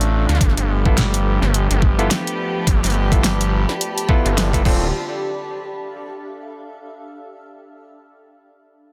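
A gritty, distorted sawtooth synth bass sits up front in this swaggering glitch hop drop, pushed along by a knocking overdriven electronic kick and a pop kit with a fat snare, hi-hat and crash, while a pumping overdriven clav adds stringy stabs through tape echo from 0.9 seconds, a distant, reedy chamber string section holds pumping chords, and a cloudy granular pad drifts above before carrying on alone from 4.9 to 7.2 seconds.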